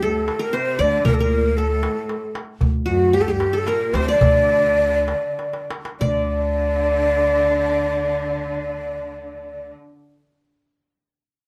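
Arabic maqam ensemble music in D maqam hijaz and 3/4, soulful and melancholic at 92-115 BPM, where a breathy, hollow end-blown ney carries the melody up front over a plucked, bright-edged qanun and a lush, distant bowed cello section on second lines, while a woody pizzicato upright bass holds D2 and a crisp metal-shell darbuka played with soft hands plays through a slowing of the tempo from 2.6 s, adds a fill at 5.4 s and drops out at 6.3 s, set in moderate small-room reverb in this brief fragment of a longer piece.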